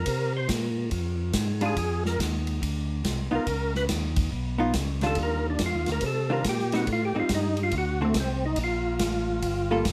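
Lightly reverberant and up front, this bluesy, greasy soul jazz organ trio excerpt swings in four as a percussive, overdriven tonewheel organ with chorus vibrato, third-harmonic percussion and a stopped rotary speaker solos over an overdriven organ bass line with key click and a boomy, natural big-band drum kit of kick, snare, hi-hat and ride, while a dark, clean, compressed hollow-body electric guitar joins with a picked accompaniment at 1.6 seconds.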